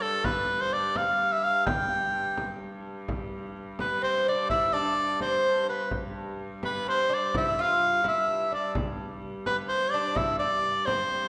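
Medieval dance in 6/8 at 85 BPM, festive and ancient in mood, set in G mixolydian, with a bright, punchy shawm carrying the folk-style melody up front over a clear, nasal hurdy-gurdy drone on G2 that sits distant and earthy. A deep frame drum played with soft hands sounds close, and at 3.8 s a delicate fingerpicked lute with some octave-doubled strings joins with a second line. The wet reverb of a recital hall gives the piece a spacious, church-like air.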